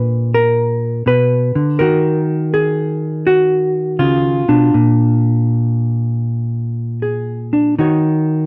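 Light reverb and a dark, warm production frame this short cut from a longer solo jazz piece, with a single electric hollow-body jazz guitar placed up front. The guitar is clean and fingered, ranging from Bb2 up to Db5 across its 8.5 seconds. Set in Eb minor at 81 BPM in 4/4, the playing carries a swung eighth-note feel loosened by rubato, giving the moment a moody yet swinging character. The harmony opens on Bb7b9, settles onto Ebm9 at 1.8 seconds, returns to Bb7 at 4.7 seconds, and lands on Ebm7 at 7.8 seconds. The instrument is tuned to A4 = 442 Hz.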